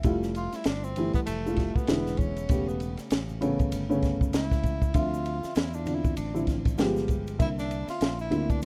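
Mellow and nocturnal, this short jazz-hop excerpt, cut from a longer piece, has a swung hip hop pulse in 4/4. A dry, compact cocktail drum kit sits up front, with a punchy kick, a high-tuned snare, hi-hat and dark ride cymbal. Underneath, a fingered electric bass plays round, direct low notes, and a woody, boxy upright piano with short sustain and a slightly detuned character comps through chords like Fmaj9, E7, Dm9 and G7b9 before settling on C9. From 0.4 s, a breathy tenor saxophone takes the intimate solo, using whispered subtone, gentle vibrato, soft attacks and scooped notes, with a touch of tape echo. In the background, a bright, compressed and saturated egg shaker and congas are played with soft hands. The whole thing has the small-room ambience of a rough home demo mix.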